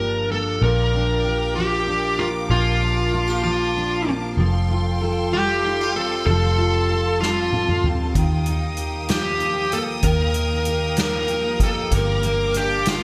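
A slow, swaying six-eight lilt carries this heartfelt pop ballad, cut from a longer piece and wrapped in bright 1980s-style digital production with a moderate plate reverb. An up-front, smooth overdriven lead guitar sings the melody in a picked, warm tone, while a double-tracked, fingerpicked jumbo steel-string acoustic guitar with fresh strings adds dark, full-bodied accompaniment. Underneath, a vintage foam-muted fingered electric bass gives a round, amped low end, and from 0.6 seconds a lush studio string section holds sustained, bowed chords with vibrato and an even, smooth top. A soft-mallet drum kit arrives at 7.2 seconds with a fill before settling onto hi-hat, boomy kick and a medium-tuned snare, its natural hall sound given gated reverb. The harmony moves from Gm7 through Bb6, Fadd9 and Ebadd9 before returning to Gm7.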